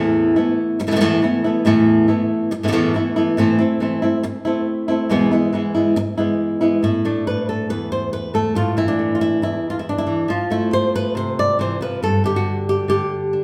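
In a straight 4/4 feel, this dramatic, intense flamenco cut features a solo fingerpicked acoustic flamenco guitar sitting up front, moving from Esus4 through Am and E before shifting at 6.8 seconds to a passage over A5, F and G5, all bathed in the lush wash of a large studio reverb that places the listener further back in the room.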